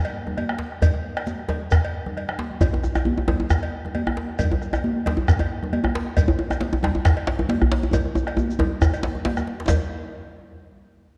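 West African traditional drum ensemble music, festive and earthy, moving at 135 BPM in 4/4 with a light swing on the sixteenths. A metallic, band-limited cowbell opens at 0.0 seconds, quickly joined by a tight, cracking djembe, a round bombo that sits up front with a compressed, saturated weight, and ringing, high-tuned congas played with soft hands. A grainy, mellow shekere enters at 0.8 seconds and stays in the background, while a second, medium-tuned djembe struck with hard hands arrives up front at 2.6 seconds, just after a short drum fill. A longer fill runs from 7.9 to 9.7 seconds before the passage turns toward a new section. The djembes and shekere sound close and dry, the congas carry a small-room feel, and the whole production is dark with a moderate concert hall reverb, cut from a longer piece.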